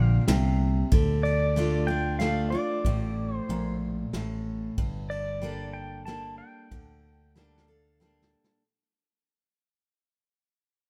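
A twangy pedal steel guitar sings a lonesome melody over a full-bodied picked acoustic guitar, a round fingered electric bass and, for the first 0.9 seconds, faint sustained pedal steel chords, while a vintage brush kit with dark cymbals enters at 0.3 seconds in this brooding honky-tonk waltz in D minor at 93 BPM, moving from Gm to Dm to Gmadd9 in a lightly reverberant room as the piece fades out and the drums play a fill from 7.4 seconds.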